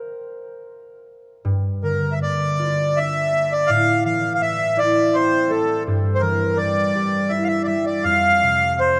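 Mournful and longing, this fragment of a Celtic slow air drifts in 3/4 at 82 BPM with uneven, rubato beats in G dorian, tuned to A4 = 442 Hz. A bright, ringing concert harp, thumb-plucked and up front, plays alone until 1.4 seconds, then carries the accompaniment through Gm7, Amadd11, G5 and F. At 1.8 seconds a reedy, mid-forward accordion with slow beating takes the melody. A wet cathedral reverb with a 4.3-second decay gives the whole piece a vast, lingering space.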